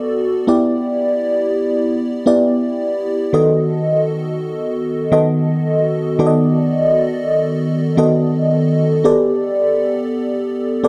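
Pop at 84 BPM in a moody, nostalgic vein, this short cut from a longer piece features a lone FM electric piano layered with a soft pad, its lush, dreamy, detuned tone given chorus and phaser and set up front in light digital reverb as it moves from Em7 to B7/D# before arriving on Gadd9 at 9.1 seconds.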